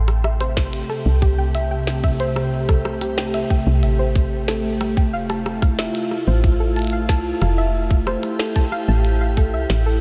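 Eerie and melancholic, this IDM fragment, cut from a longer piece, moves at 92 BPM in A minor with a straight 4/4 feel, shifting from Am7 to Fmaj7 at 5.1 seconds. A glassy FM pad holds slow-blooming, ethereal chords with ensemble chorus, built-in reverb and a touch of vintage 12-bit sampler grit, while a soft round pluck traces dark arpeggios up high through chorus and analog delay. Underneath, a woody FM bass sits up front with mellow, quickly decaying notes. A glitchy drum kit of clicky hats, rim clicks and a tiny snare flickers throughout, joined at 0.6 seconds by a tight, tape-toned electronic kick placed forward in the mix. The whole dreamy mix is soaked in a huge ambient reverb with a long 7.1-second tail, giving the track a hazy, suspended atmosphere.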